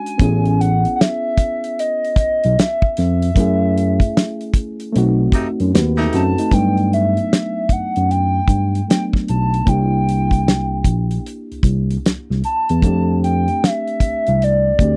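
A hollow, woody synth lead with a clarinet-like voice carries the melody from the very start, its dark, full-bodied tone colored by chorus, phaser, slapback echo and a touch of vibrato, alongside a clean, reedy electric piano playing accompaniment through its built-in speakers. Within moments a damped, dry 1970s drum kit joins with a tight kick, medium-tuned snare and hi-hat, while an overdriven tine electric piano takes the bass role, barky and gritty through a combo amp and sitting up front. This sultry, introspective neo-soul and R&B groove swings its sixteenths over rich extended chords, moving from Amaj9 through F#m9 and B7b9 before shifting to Gmaj7, C7 and F69. The band hits an accent from 3.4 to 6.5 seconds, and a clear, jazz-style horn section with light vibrato adds a brief stab between 5.3 and 6.2 seconds. The close, dry studio sound with little reverb gives this cut from a longer piece an intimate 1970s character.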